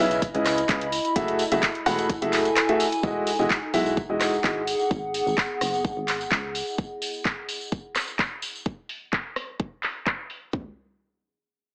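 A straight 4/4 piano house groove at 128 BPM opens on a drop, with a punchy analog drum machine laying handclaps, filtered hi-hats and rim clicks up front alongside a layered house kit's kick and toms, while a tambourine sits in the background. A clear, woody upright piano riff pumps against the kick over chords moving from C#m9 through F#m9, Emaj9 and G#m7, catching a filter sweep at 3.0 seconds before stopping at 4.6 seconds, as a round FM bass and a warbling, nostalgic tape-like pad with chorus carry the harmony. The feel-good, euphoric mood comes through a small-speaker sound with moderate plate reverb, and the drums play on alone to about 10.6 seconds after the chords give way at 8.7 seconds.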